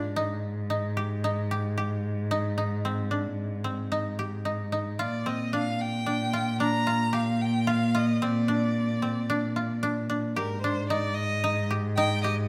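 Lightly reverberant, this shimmering, hopeful stretch of contemporary chamber music in 5/4 at 112 BPM, cut from a longer piece and tuned to A4 = 438 Hz, sets woody, fingerpicked koto arpeggios over a dark, intimate, bowed sul tasto cello bass with soft attack and vibrato, moving from Abmaj7 to Bb and back, while a clear, smooth, distant-sounding violin enters with a vibrato melody at 5.0 s.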